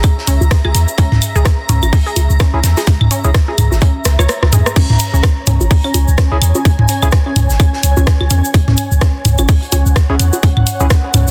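Minimal techno at 127 BPM in C# dorian, clinical and quirky, this short excerpt from a longer piece rides a swung 16th-note feel over a tight, overdriven electronic kick and a deep, punchy sine sub bass with pitch-drop attack and tube saturation, both up front, joined by an overdriven garage kit of crash, hi-hat and rim click, analog-style claves, bongos and toms through digital delay, a grainy close shaker, and a faint acoustic indie kit whose fat snare and high-passed hats sit in the background. A squelchy, resonant blip pluck with filter sweep and tape echo enters at 0.3 seconds, while a cloudy granular pad and a mellow pulsing gated texture pump softly behind, and hollow, ring-modulated organ stabs in lush chorus punctuate at 2.5, 6.3 and 10.1 seconds. A drum fill arrives around 4.1 seconds as the kick briefly drops out, all within a dry, dense, heavily limited mix.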